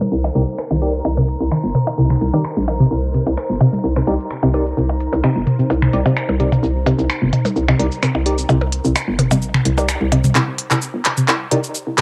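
A hypnotic, sparse stretch of minimal techno opens on a tape-softened electronic drum kit of smooth hi-hats, cabasa, finger snaps and handclaps, alongside electronic toms and percussion blips, a very quiet flickering grainy texture and a dark, warbling pad that sits nostalgic and lo-fi in the background under chorus and phaser. A hollow, bouncy FM bass knocks in up front almost at once, and at 0.4 seconds a twangy, string-like resonator pluck and a crisp, detuned wavetable chord stab arrive over a single Cm7 harmony. The pluck carries the riff with a filter sweep and moving notch, colored by chorus and tape echo, while the mellow, vintage-leaning stabs trail off through an analog delay. The percussion blips drop out at 10.3 seconds and the grainy texture ends at 10.4, where a build-up and drum fill take over with the bass, pluck, stabs and pad pressing on. A light room and a cassette-worn, home-recorded haze round off the sound of this section cut from a longer track.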